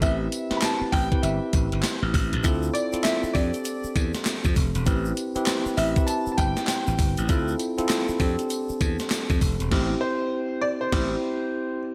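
A gated 80s digital drum machine with a thumpy kick and gated-reverb snare drives this punchy, bouncy new jack swing R&B excerpt at 99 BPM in A minor, joined by growly glassy slap bass, a bell-like tine electric piano and an intimate concert grand piano melody (both pianos touched with slapback echo), a grainy tube shaker in the background from 2.4 to 9.7 seconds, and a band accent from 9.7 seconds, the whole mix sitting in a lush hall reverb with a big arena sound.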